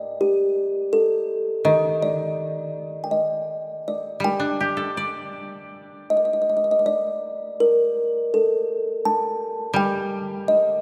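This is Japanese traditional chamber music, solitary and still in mood, moving at 81 BPM in 4/4 with an uneven, rubato pulse in the G hirajoshi scale, tuned slightly high to A4 = 443 Hz. A kalimba carries the melody from 0.2 seconds, its fingertip plucks mellow, soft and ringing, with a hollow, woody box tone that sits close-miked and full at the front of the sound. At 1.6 seconds a fingerpicked koto joins as accompaniment, acoustic and dry, placed up front but mixed beneath the kalimba. Both instruments continue together until the fragment ends at 10.8 seconds, heard as a short piece cut from a longer work. The whole is bathed in a wet church reverb with a long 3.8-second decay, lending a spacious, contemplative air to the spare pair of plucked voices.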